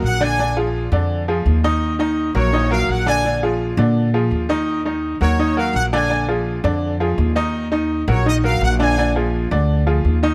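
Latin in Eb minor at 168 BPM, fiery and passionate, this brief cut from a longer piece sets a bright, slightly detuned upright piano with audible action noise and a woody, dark pizzicato upright bass up front, alternating between Bb7 and Ebm7 under a brilliant, close-miked trumpet section carrying the melody with light vibrato from 0.1 to 9.1 seconds, all in light reverb.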